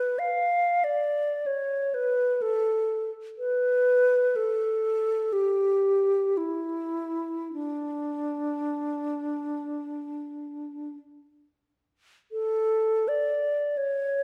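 Unfolding in free time with an expressive, lyrical pulse, this serene classical excerpt features a solo alto flute alone from start to finish, ranging from D4 to F5. Its tone is hollow and airy, with vibrato and soft attacks, and it sits up front in a wet recital hall reverb. The opening phrase runs to 12.3 seconds before the same material begins again, cut off as the recording ends at 14.2 seconds.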